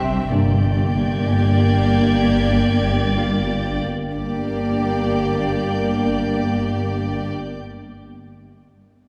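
A straight pulse at 95 BPM in 3/4 carries this eerie, uneasy fragment of a suspense film score in G minor, cut from a longer piece. Sul tasto string sections bow close and intimate: violins hold a soft-edged melody between D5 and E5 over a second violin line on G4, violas fill in around Bb3 to C4, and a woody, dark cello section and a double bass section sit in the background underneath. A dry, rustic marimba with medium hard mallets plays a low riff until 4.0 seconds, while a very quiet, ringing harp adds fingerpicked texture up to 4.1 seconds. From 0.3 seconds a distant, roomy French horn section sustains a G minor chord, and high violins add a smooth-topped texture between D6 and D7. Beneath it all sits a swarming, detuned, granular drone on G1 with its own built-in reverb, and the whole ensemble rings in a church-like hall with a long, wet tail.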